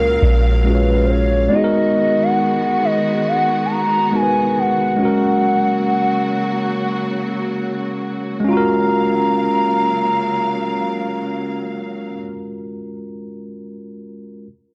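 A dreamy, tender R&B excerpt at 69 BPM in F# major opens with a round 808-style bass that stops at 1.5 seconds, beneath a clean tine electric piano that plays on to 14.5 seconds, a woody, distant string section holding lush bowed chords, and a smooth, gliding portamento lead with chorus, tape echo and vibrato carrying the melody over a swung sixteenth-note feel, all in a dry, gritty recording touched by light digital ambience.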